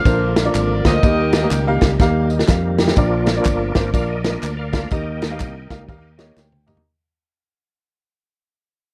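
Uptempo gospel at 123 BPM with a swung 4/4 feel and a jubilant, uplifting mood, this brief cut opens with a distant, roomy horn section stating the melody with vibrato and slapback echo for under two seconds, over a woody upright piano, a round, dark fingered electric bass with tube saturation, and a punchy, up-front acoustic drum kit with bright cymbals. A lightly overdriven tonewheel organ with percussive attack and slow rotary speaker holds chords, then takes a solo from 3.0 seconds as the music fades out, with drum fills and a late piano fill closing the passage while tambourine, egg shaker and group handclaps sit quietly in the background. The dry sound carries the worn, warbling pitch drift of old cassette tape.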